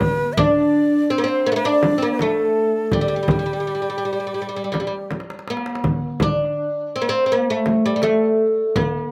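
Arabic maqam ensemble music, stately and passionate, cut from a longer piece: a woody, fretless oud carries the melody up front while a breathy, reedy ney with vibrato and slapback echo plays a second line above it until 5.1 seconds. Underneath, a clay-shell darbuka with natural skin and a deep, compressed, saturated frame drum played with soft hands keep a straight pulse. A drum fill bridges into the repeated section at 5.8 seconds, and the whole recording sounds dry and open, captured outdoors.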